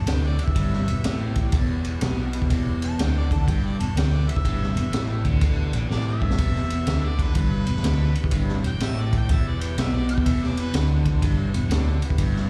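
A gritty, brooding blues rock groove with a southern rock lean opens on several parts at once. A bright, biting guitar riff is overdriven, double-tracked and touched with slapback echo, and a dark, round, foam-muted electric bass sits up front. A clean tonewheel organ holds sustained chords in the background through a slow rotary speaker, its key click audible. A raw garage drum kit drives the music with a punchy kick, high-tuned snare, ride and splash cymbal, all saturated and mid-forward with a rolled-off top, and it breaks into a fill at 5.9 seconds. Above them a warm harmonica carries a jazz-style solo melody, distant and roomy, with light vibrato, scooped notes, overdrive, slapback echo and analog delay, before dropping out at 10.9 seconds. The tune swings its eighths at 124 BPM in E minor, sounding like a live club gig heard through the venue's PA with small room ambience and club reverb, cut from a longer piece.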